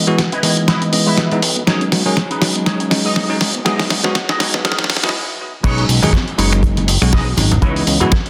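A bell-like tine electric piano pumps against a fat, thick analog bass with tube saturation sitting in the background, while a gritty, tape-toned sampler-style drum kit of snare, hi-hat, finger snaps and crash plays a fill through a filter-swept build-up, joined by a very quiet, round pluck arpeggio and a twangy, envelope-filtered electric guitar riff with chorus and delay. This sunny, feel-good nu-disco cut in B major moves at 121 BPM with a light sixteenth-note swing over chords such as C#m9, B69 and Emaj9. After a brief stop at 5.1 seconds, the drop lands at 5.6 seconds with a dry, tight acoustic kick and ringing cabasa and congas in the background, all under a moderate plate reverb and a dense, heavily limited modern master.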